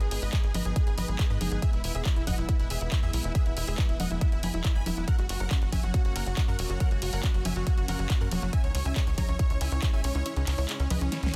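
This bittersweet, driving uplifting trance excerpt at 139 BPM in straight 4/4 opens with a huge, thick detuned supersaw lead carrying the melody, pumping against the sidechain and trailed by digital delay, while a very quiet, punchy supersaw stab adds a second line. Beneath them, a tight sawtooth sequencer bass with a filter pluck and moving notch sits up front and pumps, and a big-room drum kit fills in congas, handclaps, hi-hat, ride cymbal and a massive snare in studio reverb, as a barely audible downlifter sounds in the opening moments. A layered electronic kick arrives at 0.3 seconds, sitting forward in the mix with a hard-hitting attack. At 5.1 seconds a lush, mellow unison pluck enters in the background, its arpeggios colored by analog chorus, delay and a filter sweep. The harmony moves from G#m to E, F# and C#m. The kick drops out at 10.3 seconds, leaving room for a drum fill near the end, and the whole is tuned to A4 = 436 Hz, in a dense, heavily limited modern master with a digital ambience.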